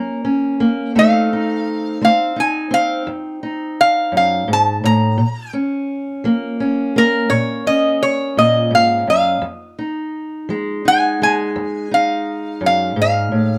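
A dark, boxy parlour-style steel-string acoustic guitar opens this mournful, brooding acoustic country blues excerpt in a slow 12/8 with fingerpicked accompaniment, joined at 1.0 seconds by an up-front lap resonator guitar that carries the melody with a bright, metallic, nasal slide tone played with fingerpicks, the pair captured by close, detailed microphones in light reverb as the harmony moves from F7 to Bbm and then Fm7.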